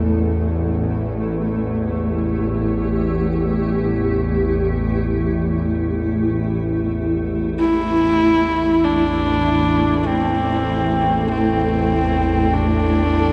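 Dark ambient drone in free time and A minor, desolate and ominous, cut from a longer piece. From the start, a low, bowed-like drone in the A1 to E2 range sounds tense and string-like, its detuned sawtooth tone carrying a noise layer and vibrato, while a granular cloud pad holds sustained chords between A3 and A4 with a blurred, evolving, mellow character. Both play through to 13.3 seconds, sitting up front with their own built-in reverb. At 7.6 seconds a single horsehead fiddle enters with a melody between C4 and E4, its nasal, husky, earthy tone showing light vibrato, portamento and an airy bow, trailed by a diffuse ambient delay. The whole is bathed in a huge, wet ambient reverb with a long 8.4-second decay and a dark production.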